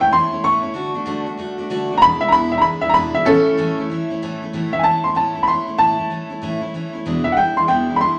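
A moderate large-studio reverb gives this short rock excerpt a roomy sound, with a woody, boxy upright piano sitting up front and carrying the melody at 190 BPM with a swung eighth-note feel in A major. Beneath it, a picked steel-string acoustic guitar with a bright, full-bodied jumbo tone plays the accompaniment at a lower level, both parts running from 0.0 to 8.2 seconds. The mood is retro and rowdy, moving through A, D and E7 chords before a change of section at 4.5 seconds.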